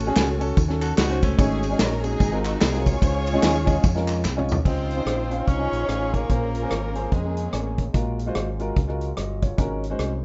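A punchy, up-front country drum kit drives this uplifting, reverent uptempo gospel excerpt at 146 BPM in a swung Db major, with a round, dark fingered electric bass and a woody upright piano beneath a smooth, bowed string section carrying the expressive melody, while tambourine and handclaps add a live-room lift until 4.6 s, a clean electric guitar slips in a brief second line at 0.8 s, and after a drum fill a breathy tenor saxophone joins the melody at 4.7 s over very quiet French horn chords, the mix dry and rough like a home demo with a dull top end.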